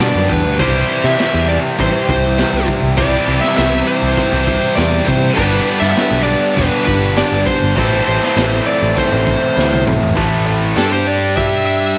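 A lightly reverberant studio sound carries this swaggering, driving classic rock excerpt at 100 BPM, where a fuzzy, compressed lead guitar sings up front over a bright overdriven riff guitar, a darker phased guitar in the background, a growly picked bass, a raw, gritty small-room drum kit with a high-tuned snare, jingly tambourine, a barely audible jangly tack piano and a silky string machine that enters at 2.0 seconds, before a drum fill at 9.6 seconds launches a short lead guitar solo at 10.2 seconds.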